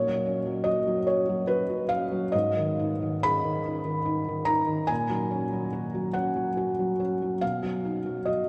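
Neoclassical minimalist piano, wistful and intimate, moving slowly in 6/8 with a rubato feel. A felt-muted upright piano plays alone across the whole 8.5-second fragment, its tone soft, dark and mellow from thick felt, with the mechanical action audible up front. The part spans from G#2 up to B5. The harmony drifts from F#/A# to G#m, back to F#/A# at 4.9 seconds, and settles on B at 7.4 seconds. A long cathedral reverb blooms around the close, natural-sounding piano, setting it within the resonant space of a church or concert hall. Cut from a longer piece, the moment feels like a private reflection caught midway.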